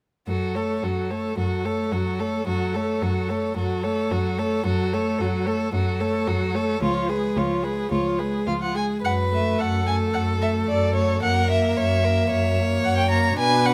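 From 0.3 s a string quartet sets off together in a quick, restless and urgent classical-period movement in F# minor at 110 BPM, the smooth, rich first violin carrying the melody over a focused, up-front second violin line, while viola and cello, both expressive with soft attacks and portamento, supply accompaniment and bass in light reverb, the harmony moving from F#m through C#7 before turning to F#7 near 11.2 s.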